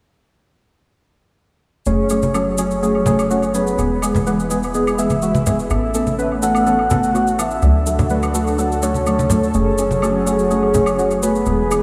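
A deep, mellow chord stab sits up front in this dreamy, driving progressive house excerpt at 125 BPM in F# minor, its detuned, ring-modulated tone trailing into diffuse ambient delay, while a round, octave-layered synth lead with vibrato carries the melody above it. Underneath, a lush, warbling unison pad holds sustained chords in the background, a punchy, tube-saturated sequencer bass drives the low end, and bright, dry woodblock and congas join grainy cabasa at 2.1 seconds. The chords move from F#madd9 through E, Aadd9 and D back to F#madd9 as a filter sweep runs across an analog synth pad, all set in a reverb-soaked hall.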